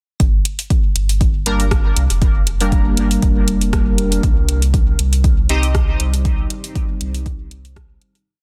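A punchy, overdriven four-on-the-floor kick drives this hazy, nocturnal dub techno piece at 119 BPM with a light 16th-note swing, alongside metallic closed hats and a rim-click backbeat in G minor, moving from Gm to Cm. A round sine sub bass holds long gliding notes under sidechain pumping, while a resonant, ring-modulated polysynth plays sparse, bright chord stabs through chorus, phaser and dub echo from 1.5 s, one shape moved in parallel. A dark, detuned ambient pad with a moving notch enters at 5.2 s with a slow attack, and the dense, dry, heavily limited mix fades out from 5.6 s.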